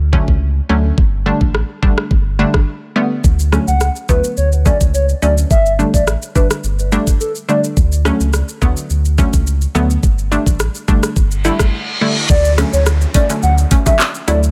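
Dancehall at 106 BPM in D major with a sunny, bouncy feel, built on a deep sine-and-triangle sub bass with octave, a round, detuned analog pluck washed in chorus, and an up-front electronic island pop drum kit with knocking kick, metallic hi-hats, handclaps, rim click and shaker, while a hollow, woody clarinet-like synth lead with vibrato, chorus and digital delay carries the melody from 3.7 seconds, a reverse cymbal and downlifter sweep in at 11.4 seconds before a brief silent gap, and tight, high-tuned bongos add a very quiet touch from 12.6 seconds over a dry mix cycling Dmaj7 and Gsus2.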